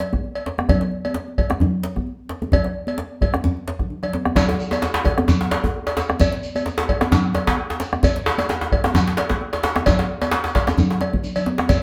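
A swung 16th-note groove at 131 BPM in 4/4 drives this short clip of a West African drum ensemble, earthy and powerful in mood, cut from a longer piece and played live together in one room with a wet studio reverb. From the opening a dark, dry bombo sits up front beneath a close, warm djembe, with a metallic cowbell and bright, high-tuned congas ringing in the room around them. A drum fill at 3.8 seconds leads into a fuller second passage at 4.4 seconds, where a second djembe enters up front in the room with a tight, cracking tone and metal rattles, played with soft hands. A grainy, mellow shekere joins at the same moment from a distance, as if from a larger space behind the drums. Another fill arrives at 11.2 seconds just before the clip ends.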